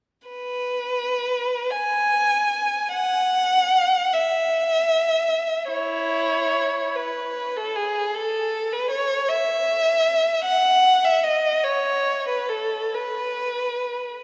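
The rhythm moves in a 6/8 that bends freely under rubato, giving this classical fragment for unaccompanied violin an unhurried, breathing quality. A single bowed violin carries the whole piece, its rich tone sitting up front and ranging from E4 to G#5. The playing is expressive and lyrical, shaped by singing vibrato, soft attacks and gliding portamento between notes. The first phrase unfolds from 0.3 to 5.7 seconds before a second section takes over and runs until the fragment ends at 14.2 seconds. A long, wet church reverb surrounds the instrument and lends the nostalgic mood a spacious, resonant glow, and the passage is clearly cut from a longer work.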